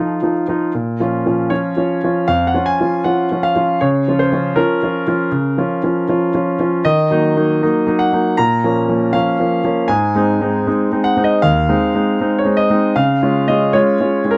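Moving in a flexible, rubato four-beat pulse, this elegant and dramatic fragment of a classical-period piano sonatina features a solo concert grand, clear and up front with deep bass and long sustain, captured by close, detailed microphones in light reverb as its minor-key harmonies drift toward major chords near the close at 14.4 seconds.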